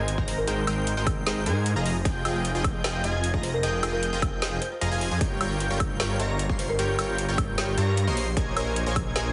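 Through a heavily compressed, radio-like sound with light reverb and a top end rolled off above 10.9 kHz, this emotional, dreamy future bass excerpt in F minor moves at 152 BPM in a half-time feel, with a thick, detuned saw bass and punchy supersaw stab riff up front, a hollow, woody kalimba melody and an airy sine-based arpeggio lead with chorus, vibrato and digital delay in the background, all four pumping against the sidechain, while a layered electronic kick and a trap kit of metallic hats, woody snare and woodblock sit in small-room ambience, a barely audible impact marks the opening 0.5 seconds, and the chords run from Abmaj7 through Fm9 and Gm7b5 to Bbm11.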